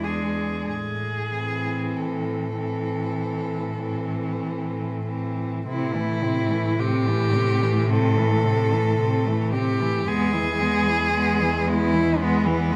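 A recital-hall reverb, with a decay of about 1.5 seconds, gives this passage for cello quartet a glowing, resonant sound. It is a lyrical classical piece in A minor, slow and flexible at roughly 46-58 BPM in 4/4 with a rubato feel, and its mood is yearning and elegiac. Four bowed cellos, each a single player with vibrato, sound together for the full 12.8 seconds. The up-front melody cello sings in a rich, smooth, even voice from B3 to A4 over a warm, close second line, while the accompanying cello and the soft-attacked bass, which sits up front, shape their expressive lines with portamento. The harmony moves from an opening E7 to A minor at 0.7 s, then to E at 10.1 s in this excerpt cut from a longer work.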